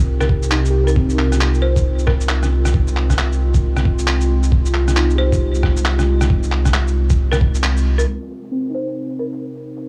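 A deep, round sub bass pumps up front beneath a warbling, lo-fi tape-like pad with vintage sampler grit and muted, dark felt-like synth keys trailing tape echo, while a woody, dry marimba with hard mallets carries the melody and muffled, overdriven rim clicks, shaker, handclaps and a thumpy, pitched-down kick drive a swung, melancholic and ghostly future garage groove that turns to a filter sweep at 8.1 seconds.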